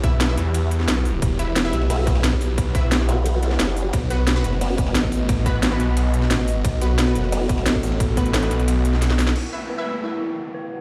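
A short cut from a dark technical drum and bass track at 177 BPM in E harmonic minor, opening on a tense, futuristic drop where everything hits together. A snarling, distorted saw bass growls up front with tube saturation and sidechain pumping, over a tight, overdriven electronic kick and a produced drum and bass kit with a cracking snare and crisp hats, while a very quiet, gritty breakbeat kit with dark cymbals sits underneath. Bold, punchy orchestra-hit-like synth stabs cut through with phaser and digital delay, and a deep, moody analog pad holds sustained chords with chorus as the harmony moves from Em to B. A formant-sweep wobble bass joins between 1.9 and 4.9 seconds and returns briefly at 7.3 seconds. The kick falls away at 8.7 seconds ahead of a drum fill and a band accent, and at 9.4 seconds an eerie, inharmonic detuned bell arpeggio with a low-pass filter sweep appears alongside an electronic downlifter. 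The whole mix plays as if through a big sound system in a bare room, carrying light, large studio reverb.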